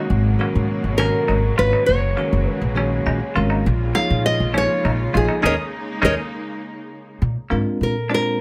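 Funky and intense, this jazz excerpt in 6/8 sets a bright, full-bodied, fingerpicked nylon-string guitar melody with slapback echo and audible finger squeak up front over a woody, thumpy pizzicato upright bass, bell-like tine electric piano accompaniment that adds a fill at 2.8 seconds, clean, compressed stabs from a semi-hollow electric guitar in lush chorus, and distant, smooth bowed symphonic strings holding sustained chords through a band accent from 5.4 seconds until they stop at 7.2 seconds, when the nylon-string guitar takes a solo.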